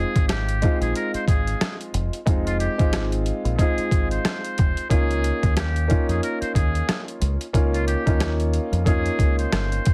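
Dark and reflective, this short excerpt of boom-bap hip-hop moves at 91 BPM in F minor with a swung 16th-note feel. A gritty, pitched-down sampler-style drum kit enters at 0.2 seconds, its thumpy kick, medium-tuned snare, rim click and hi-hat sitting up front with a tape-warm character. Beneath it, a deep dub fingered electric bass plays round, punchy low notes, while a woody, mellow upright piano carries the accompaniment through a cassette-tape haze and plate reverb. Over the top, a trumpet with a metal mute delivers a whispered, buzzy jazz-style solo melody, thin and breathy with a soft attack, touched by slapback echo and plate reverb. The harmony shifts from Fm7 to Db69 at 4.9 seconds, and the whole mix has a heavily compressed, radio-like sound in a light reverb.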